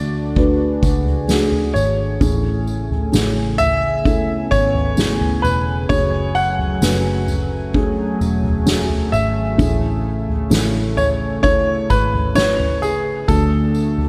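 A slow, straight 4/4 pulse at 65 BPM carries this hopeful, emotional pop ballad excerpt in A major, where a clear, up-front baby grand piano sings the melody with slapback echo over a felt-muted upright piano's intimate, boxy accompaniment (its action noise audible), a shimmering, detuned pulse-width pad holding sustained chords, and a round, foam-muted vintage electric bass, while a distant soft-mallet drum kit with a fat snare and punchy kick enters at 0.4 seconds and a jingly tambourine joins at 0.8 seconds, all bathed in a lush hall reverb that gives a big arena sound as the chords move from D through Amaj7 and F#madd9 and back.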